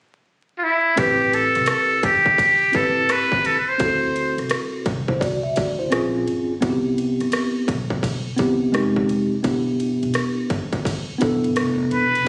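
A laid-back 85 BPM groove in 4/4 with a 65% swing on the sixteenths sets this cool, nocturnal jazz-hop piece in A minor, cut from a longer track. A metal-muted trumpet opens the melody at 0.6 seconds, buzzy, breathy and whispered with a soft attack, sitting up front in an intimate, vintage jazz style before briefly returning at 11.9 seconds. At 1.0 seconds the rest of the band enters: a worn, slightly out-of-tune tine electric piano plays mellow, direct chords, an upright bass adds woody, thumpy pizzicato lines from gut strings, and an electronic drum kit brings a distorted kick, crisp hats, ride and rim clicks, re-recorded in a small room. The harmony moves from Am9 and D7 through Bbm9, Cmaj7 and Fm7 to Em7. The sound has the feel of a phone recording in a room, dressed with studio reverb, light digital ambience and a layer of vinyl crackle.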